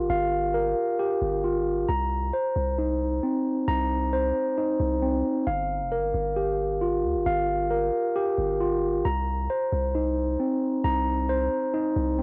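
A half-time feel in 4/4 at 134 BPM gives this brooding, hard-hitting hip hop and trap fragment its heavy, unhurried pulse, cut from a longer piece and tuned to A4 = 442 Hz. A mellow tine electric piano plays arpeggios from C4 to Bb5 across the full 12.2 seconds, its clean tone colored by cassette tape and an analog delay and heard as if through built-in speakers. Beneath it, a long sustained 808-style bass holds between F1 and D2, a deep sine tone with a fast attack that then decays. Both parts sit up front, following a minor-chord movement between Gm7 and Cm7, with changes at 1.9, 5.5 and 9.1 seconds. Light reverb and the lo-fi character of a home cassette recording lend the whole passage an intimate, worn quality.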